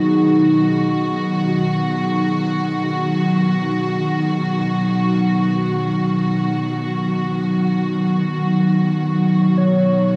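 A huge, wet reverb with a long eight-second tail surrounds this short ambient passage, cut from a longer piece, giving it a luminous, peaceful glow. Up front, a close studio string section holds dark sustained chords on B major in free time, bowed sul tasto with a soft attack and light vibrato. Behind it, muted felt-like synth keys play soft, decaying arpeggios in a higher register, their triangle and sawtooth tone carrying a faint noise layer and filter sweep, coloured by chorus, tape echo and shimmer reverb. For the opening 1.6 seconds, a barely audible resonant drone with moving, ring-modulated overtones sits alongside the strings before fading out, and the music settles into a new section at 1.5 seconds. The strings and keys continue together through to the close at 10.2 seconds.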